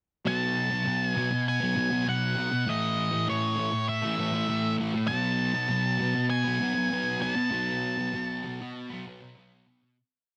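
A straight 4/4 rock groove at 99 BPM carries this blissful, dreamy whole piece, where a warm, double-tracked fuzz guitar strums up-front chords from A2 to B3 with distortion and subtle chorus under a dark octave-fuzz lead guitar singing motif-based phrases from C#5 to A5 through distortion and digital delay, moving over B5, A and B5 in a dense, heavily limited, nearly dry mix that fades out from 7.5 to 10.0 seconds.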